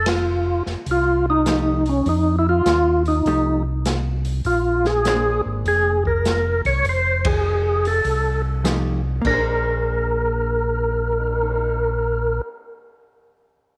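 Light reverb and a small-room ambience frame this brief, greasy soul jazz organ trio cut, swung in four with a soulful strut over F9 and Bb9 chords. Up front, a percussive tonewheel organ carries the melody with a fat, lightly overdriven tone, key click and second-harmonic percussion, colored by chorus vibrato, a slow rotary speaker and a slapback echo. Beneath it, a second tonewheel organ holds down the bass with a mellow, round, clean sound, also turning through chorus vibrato and a slow rotary speaker. An acoustic jazz kit sits further back with dark cymbals, a medium-tuned snare and a boomy kick, moving across crash, ride, hi-hat and cymbal swells, while a hollow-body electric guitar enters at 1.5 s with picked, compressed comping. The band hits accents together at the start and again around 7.1 s before the passage shifts into a new section at 9.2 s.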